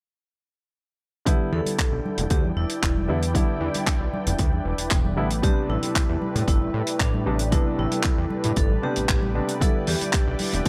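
This groovy, sleek nu-disco passage is cut from a longer piece and opens at 1.3 seconds with most of the band at once. An up-front, punchy, layered electronic kick and a dry, airy 70s drum kit of handclaps and hi-hat drive a straight pulse, while bright congas with soft hands sit in the background. A fat, saturated analog bass enters at 1.5 seconds, its detuned sawtooth tone thickened by tube saturation and moved by a filter sweep. A present baby grand piano supplies the accompaniment, and a lush unison pad holds sustained chords with a slow attack, shimmering through chorus and phaser and pumping with sidechain compression. On top, a metallic, ringing vibraphone with medium hard mallets and a medium motor vibrato carries the melody through an analog delay, as the harmony moves from Em7 to Am11 and back to Em7 at 9.6 seconds, all in a close, nearly reverb-free sound.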